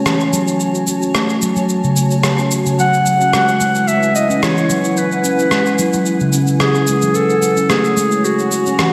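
A sampler-style electronic rim click and cabasa set a relaxed 110 BPM groove in 4/4 with a light sixteenth-note swing, their compressed, gritty tone carrying the feel of a small room. This meditative organic downtempo piece in F# minor, cut from a longer work, rests on a granular cloud pad whose detuned, blurred, slowly blooming chords glow behind everything, touched with a subtle chorus and its own reverb. Up front, a steel tongue drum played with soft rubber mallets spins round, ringing arpeggios, its mellow tone rounded by a low-pass filter and trailed by tape echo. At 2.8 seconds, as the harmony moves from F#m to Eadd9, a close-miked classical clarinet enters as the solo voice, clear and soft in attack, with its own tape echo. The chords settle back on F#m at 7.2 seconds, and a lush hall reverb soaks the whole mix in a dreamy, warm haze.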